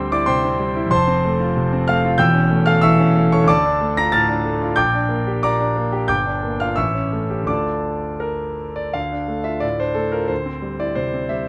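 A clear, up-front concert grand piano with a deep bass and long sustain carries this brooding, stormy romantic character piece for solo piano in a flexible rubato 2/4, its harmony moving through minor chords and dominant sevenths across a range from E1 to Bb6 before a new section begins at 8.9 seconds, all set in a moderate studio reverb in this short cut from a longer work.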